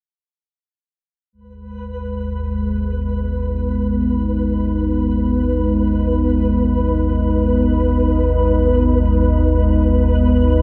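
Ominous and cavernous, this dark ambient drone in free time sets a deep, rumbling, warbling drone with lush chorus beside a moody, full-bodied analog pad of sustained, detuned chords from 1.7 seconds, while a faint, grainy, flickering texture enters at 1.8 seconds, all suspended in a huge ambient reverb within a dark production cut from a longer piece.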